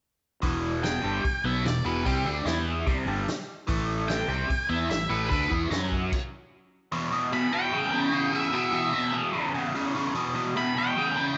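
A biting, double-tracked overdriven guitar sits up front with a phaser-tinged riff in this gritty, driving blues rock and southern rock power-trio passage, taken from a longer piece and set at 148 BPM in a straight 4/4. An octave-fuzz lead guitar carries the melody high above it, its dark, distorted tone dressed in slapback echo. Underneath, a growly fuzz bass played with the fingers and a punchy vintage acoustic kit of kick, snare, hi-hat and crash drive the opening as the chords move from E5 through Csus2, A5 and F#5. At 6.1 seconds the bass and drums drop out for a stop, then the two guitars carry on into a new section on E5 from 6.9 seconds. A moderate echo-chamber reverb and a small-room ambience frame the sound, with a rolled-off top that keeps it vintage in character.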